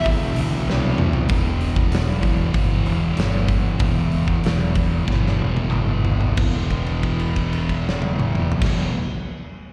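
A very quiet, double-tracked sludgy distorted guitar and two dark, thick fuzz guitars sitting in the background (one carrying slapback echo) open this ominous stoner and doom metal cut at 91-97 BPM in E minor, joined almost at once by a growly, punchy fingered electric bass with overdrive and a big, up-front rock drum kit with a punchy kick and drum fills; the quiet guitar stops at 1.3 seconds, the tempo then slows, and a held E5 note rings from 6.4 seconds, all heard as a live gig through the venue's PA with recital hall reverb.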